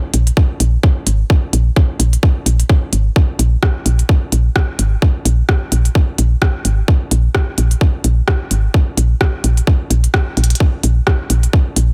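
A swung 4/4 groove drives this sparse, quirky minimal techno excerpt: a tight, layered electronic kick arrives up front at 0.4 seconds, a clicky minimal kit of hi-hat and rim click adds tape-tinged ticks from a small room, and a woody, round FM bass pumps against the sidechain low in its register, all kept dry throughout, with a drum fill at 10.4 seconds.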